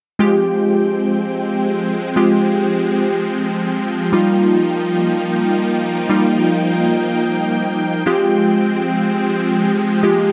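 Bathed in a lush hall reverb, this energetic, bittersweet pop fragment sets huge, detuned supersaw chords up front alongside glassy digital keys with chorus and a filter sweep, moving from Fmadd9 to Ebadd9 at 4.1 seconds and back at 8.1 seconds.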